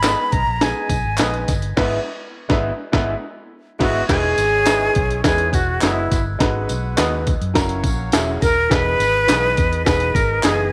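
A moderate plate reverb and small room ambience frame this joyful, uplifting slice of uptempo 1960s-style soul at 104 BPM in 4/4, moving from G#m through Emaj7, G#m7 and F#7. A breathy, close-miked jazz flute with vibrato carries the melody up front over a gritty, pitched-up breakbeat kit with a thumpy kick and high-tuned snare, a round, foam-muted fingered bass, and woody upright piano. A twangy electric guitar with spring reverb stabs in the background alongside handclaps and tambourine, while a very quiet glockenspiel played with rubber mallets adds a mellow second line; the band hits an accent from 1.8 to 4.1 seconds, and at 4.1 seconds a warm pop-style horn section enters with octave doubling.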